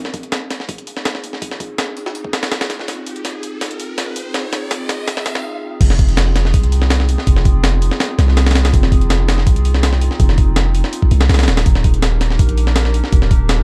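This drum and bass cut with a jungle edge rides a straight, driving 4/4 groove from a gritty, pitched-up breakbeat kit, compressed and up front, with a thumpy kick, medium-tuned snare, hi-hats and crash, all thinned by high-pass filtering. Beneath it, a warbling, detuned pad in a lo-fi tape-like tone holds sustained chords through chorus and its own reverb, with a filter sweep on it during the opening build-up, lending the frenetic energy a nostalgic glow. An electronic riser sits in the background from 1.2 to 5.4 seconds, with the drums joining in a fill from 2.9 seconds, and a brief break follows before the drop at 5.8 seconds. There a deep, sine-toned 808-style bass enters with a fast attack and long, decaying notes, mellow yet prominent in the mix. The harmony rests on Fm7 before moving to Ebmaj7 at 11.7 seconds, and the dark, dry production keeps this excerpt of a longer piece close and warm.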